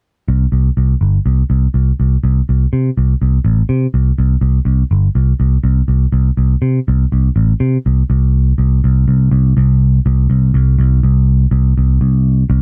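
A picked electric bass opens this short rock excerpt at 123 BPM in a straight 4/4, its bright, growly, punchy tone sitting up front in a dry sound with little reverb. Moving between G1 and C3 and tuned slightly low to A4 = 439 Hz, the amped bass carries a cathartic, bittersweet mood through one section before shifting into a new one at 8.1 seconds, playing on until 12.6 seconds.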